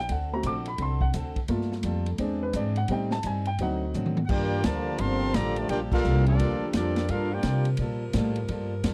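Sultry and swinging, this big band swing excerpt in G minor at 172 BPM opens with a natural-toned grand piano solo over woody, growly pizzicato upright bass, a picked steel-string acoustic guitar in the background and a swinging drum kit with dark cymbals and a punchy kick, until a drum fill at 3.9 seconds brings in a clear, vibrato-laden trumpet section on the melody at 4.2 seconds, a smooth-topped trombone section on a second line and a warm, close-miked saxophone section holding sustained chords in the background, with a band accent at 5.9 seconds, captured in a dry, close 1970s-style studio sound.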